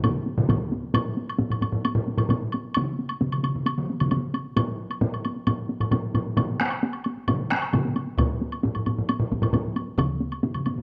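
Ceremonial and driving, this Japanese traditional taiko drum ensemble passage in straight 4/4, cut from a longer piece, features a near-miked solo taiko struck with hard sticks alongside a second solo taiko that sits distant in a large room yet up front, dropping out at 9.6 seconds. A full taiko ensemble shares that roomy, up-front character, a woody woodblock sounds close by, and a second, tight and intimate ensemble appears briefly at 0.5 seconds before returning from 8.2 to 10.1 seconds. The recording has the dry feel of a 1970s-style studio, with a faint mains hum underneath.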